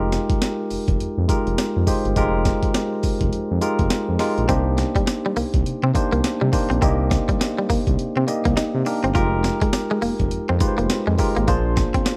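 Punchy and confident, this short new jack swing cut moves at 103 BPM with a 16th-note swing, built on a gritty, pitched-up breakbeat sampler-style kit with a thumpy kick, medium-tuned snare, hi-hat and tambourine, a smooth, nasal synth bass with vibrato, and a worn, slightly out-of-tune tine electric piano up front over Fm11, Cm9 and Bb9 chords, while a twangy, direct-recorded clean electric guitar riff with subtle chorus enters at 4.5 seconds, all in a dry, close 1970s-style studio sound with digital ambience.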